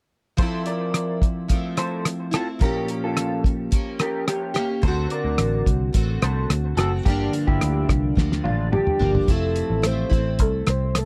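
Indie pop with a bedroom-pop feel, laid-back and sunny at 108 BPM in F major, this short cut from a longer piece opens with a cloth-damped, thuddy drum kit up front, a picked plugged-in steel-string acoustic guitar with analog chorus and warbly pitch drift, and a slightly broken-up electric guitar through a small old amp playing a lo-fi second line with tape echo, before a round, foam-muted vintage electric bass enters at 4.8 seconds, a drum fill arrives at 8.2 seconds, and a soft octave-layered synth lead with lush chorus and vibrato takes the melody at 8.7 seconds, set in a dry, close 1970s-style studio sound with light reverb.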